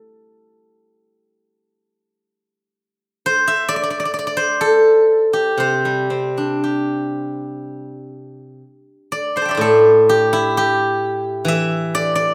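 A silvery, ringing steel-string zither plucked with fingerpicks sits up front as the sole voice in this serene, elegant piece of Chinese traditional solo music, moving with a free, rubato feel and ranging from A2 to C6. Its bright, acoustic tone carries a light reverb, and at 7.6 seconds the music shifts into a new section that runs until the excerpt ends at 12.3 seconds.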